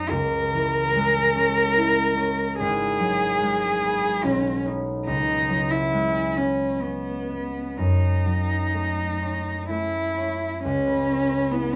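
A rubato 3/4 lilt drifting between 61 and 75 BPM carries this wistful, hazy impressionist classical duo in C# dorian, tuned to A4 = 436 Hz, where a bowed solo cello sings the melody up front with focused vibrato and a smooth top while an acoustic concert harp, also close, gives warm, ringing fingerpicked accompaniment through chords such as C#m6, G#m7 and F#m6 before arriving at C#m7 at 10.6 seconds, the sound bathed in light reverb, small-room ambience and the warbly pitch drift of worn old cassette tape in this brief passage cut from a longer piece.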